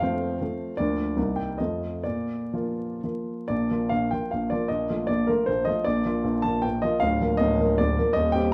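A solo grand piano, intimate and natural with its action noise audible, plays a short fragment of a romantic triple-time dance in dotted rhythms, its rubato lending a rustic, proud character. The phrase is stated and then repeated from 3.5 seconds, moving through simple cadential harmonies that settle back on the home chord. A large, wet studio reverb places the listener further back in the room, and a vinyl crackle sits beneath the playing.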